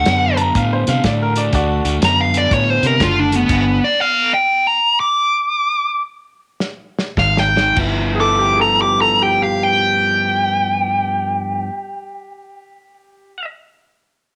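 A swung 4/4 shuffle at 98-122 BPM drives this laid-back, gritty electric blues in G mixolydian, cut from a longer piece, with a dark, smooth overdriven lead guitar up front carrying the melody throughout. Crunchy rhythm guitar with spring reverb plays the riff over a round, punchy muted bass and a muffled, lo-fi soul drum kit until a stop at 3.5 seconds, where the tempo slows before a drum fill at 6.6 seconds brings the groove back. A clear, woody upright piano adds a second line early on and again from 8.2 seconds, all set in a light small-room ambience.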